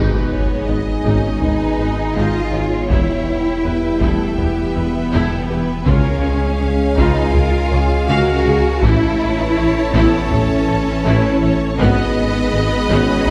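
A close, smooth cello section anchors this futuristic, relentless hybrid orchestral and electronic film-score excerpt at 81 BPM beneath a lush background violin melody, a clear, intense second violin line and a focused viola accompaniment, joined by a deep sub bass, bowed double basses and a very quiet tuba, while a tight, detuned sequenced synth plays arpeggios and a moody analog pad, mellow French horns and dark trombones sustain chords through G#m, Em, C# and A; an electronic impact fills the opening 2.9 seconds, taiko drums struck with hard sticks enter at 1.0 seconds, and a long scoring-stage reverb places the ensemble further back in the room.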